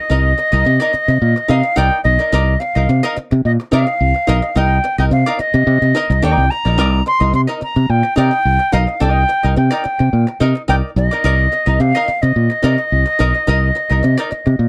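A pure, straight-toned silver concert flute carries an expressive melody with a crisp attack in this funky, driving excerpt from a longer piece. Beneath it, a dark, clean, compressed hollow-body archtop guitar adds wah-coloured accompaniment, while a direct, up-front fingered electric bass anchors the groove. The whole passage rests on a single Cm9 chord in a dry acoustic.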